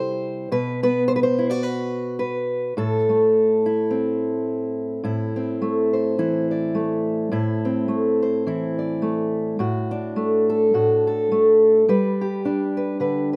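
A fingerpicked steel-string acoustic guitar plays alone, its dark, up-front tone carrying a slapback echo through this short folk piece cut from a longer performance. The mood is intimate and wistful, with a lightly swung feel in four, and the open-air recording leaves the guitar dry and close, with little reverb. The chords move from C and B5 to Am, a second section begins around 5.0 seconds, and the harmony later shifts to D/A and G.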